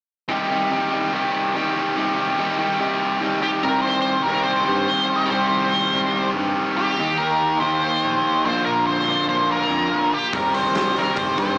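Opening at 0.3 s with an up-front, compressed and scooped overdriven electric guitar riffing in C minor alongside a sludgy distorted guitar sitting in the background with slapback echo, this gritty, brooding classic rock passage at 143 BPM in straight 4/4 adds a dark octave-fuzz lead guitar melody with wah and distortion from 3.4 s, with a bright, direct picked electric bass joining just after, as the harmony moves from Cm through Eb and Bb before a big-room rock drum kit with a punchy kick and medium-tuned snare comes in at 10.3 s, all heard as a live club gig through the venue's PA with light reverb and a small-speaker sound, cut from a longer piece.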